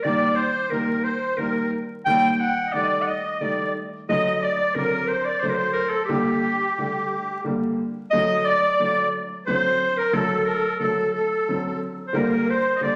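A bright, smooth-topped clarinet leads this bittersweet yet festive klezmer piece in three, carrying the melody up front in a classical style. Alongside it, a reedy musette accordion with its characteristic wet tuning adds a shimmering second line in the same register. A woody, boxy upright piano sits up front as well, supplying the accompaniment in a lower range. All three play throughout this short passage cut from a longer piece, moving through Eb, D and G minor harmonies. The opening section gives way to a second one at 8.1 seconds. A large studio reverb surrounds the group, and a layer of vinyl crackle lends the recording an aged character.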